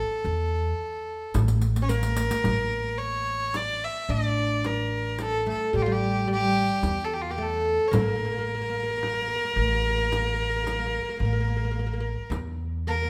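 Longing and hypnotic, this excerpt of an Arabic maqam ensemble piece in A maqam hijaz moves at 109 BPM in a straight 10/8: a clear, nasal bowed violin with light vibrato and an airy bow carries the melody up front, a woody, double-strung fretless oud plays a deep, plectrum-plucked second line, and a thumpy gut-string pizzicato upright bass, also up front, anchors the bottom, while close, dry riq jingles enter at 0.2 seconds and a small, bright frame drum played with soft hands arrives with a fill at 1.3 seconds, the ensemble sitting in a moderate recital hall reverb.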